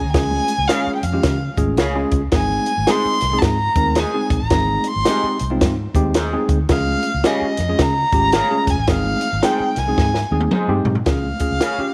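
A swung 110 BPM groove in 4/4 drives this uplifting, danceable 1960s-style soul excerpt in Ab major, where an up-front, woody violin bowed sul tasto with vibrato carries the melody over a round, foam-muted fingered bass, a worn, slightly out-of-tune tine electric piano, a dry cocktail kit with punchy kick and high-tuned snare, very quiet distant congas, and twangy, slightly broken-up guitar stabs with slapback echo entering at 0.7 seconds, all in a small room with light reverb before a drum fill at 10.0 seconds.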